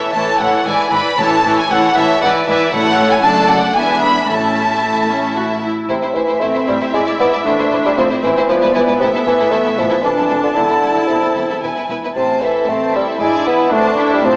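Heard through a small speaker in a wet concert hall, this excerpt is a cheerful, graceful, quick classical-period orchestral movement in 3/4 at 115 BPM. It opens in A major and turns to A minor at 5.9 s. An expressive, up-front violin section carries the melody over a distant, rich second violin line, smooth violas, focused cellos and a double bass section in the background, all bowed with vibrato. Very quiet, articulate timpani struck with hard mallets sound from 1.2 to 5.1 s, and a mellow, roomy solo bassoon comes forward with accompaniment at the minor turn.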